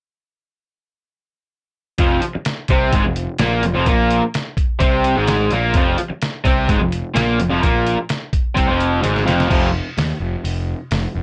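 A straight 4/4 garage rock groove, raw and gritty in a dry mix, kicks in at 2.0 seconds with a muffled, pitched-down sampler-style drum kit of thumpy kick, fat snare, hi-hat and crash, a bright, double-tracked overdriven guitar riff up front, and a fuzz-soaked picked electric bass; a drum fill at 9.0 seconds leads into a brief F5 passage as the guitar drops out at 9.7 seconds and the drums and bass carry on, in this snippet cut from a longer piece.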